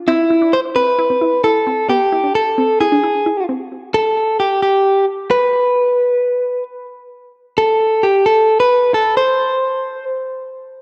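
A clean electric guitar, recorded direct and sitting up front, carries the melody from 0.1 seconds onward, its picked, compressed and scooped tone touched by spring reverb and a cassette-tape haze. This is a melancholic, nocturnal pop fragment cut from a longer piece, moving at 132 BPM in a straight 4/4 feel. Beneath the guitar, a resonant blip pluck traces arpeggios in a lower register, a juicy, squelchy synth voice with a fast attack and short decay that warbles through phaser, cassette tape and tape echo. The opening passage moves through C, G and E before the harmony drops away at 3.7 seconds, where the pluck stops and the guitar continues alone. The whole recording has a homespun cassette character, set in a wet studio reverb.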